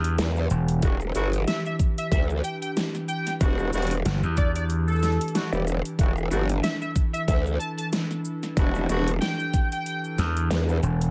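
Glitch hop at 93 BPM with a swung 16th-note feel, this playful, gritty passage in E minor is cut from a longer piece and sits on a single Em9 chord under a layer of vinyl crackle and light reverb. A warbling, nostalgic tape-like pad with sidechain pumping holds sustained chords, while an overdriven dubstep kit of huge snare, bright hats and shaker meets a knocking, up-front electronic kick that enters at 0.8 s. A punchy slap bass drops out at 5.2 s and returns at 10.2 s beside an aggressive, wobbling growl bass, as tight horn stabs with 12-bit sampler grit and dub echo punctuate the groove and an edgy, tearing sync lead with vibrato carries the melody above.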